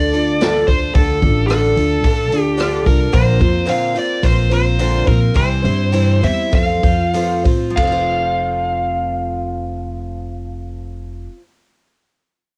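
A dark, overdriven electric lead guitar carries the melody up front in this hopeful folk rock and heartland rock excerpt, recorded at home on cassette over a shimmering, octave-doubled twelve-string acoustic guitar with plate reverb and a woody, growly pizzicato upright bass. A vintage drum kit with a punchy kick and a rolled-off top plays hi-hat, ride, rim click and snare, and the pulse slows from 3.1 to 7.8 seconds as the chords move from Dm through Bbadd9 and C to F. The drums stop at 7.9 seconds, leaving the guitars and bass to carry on into the next section.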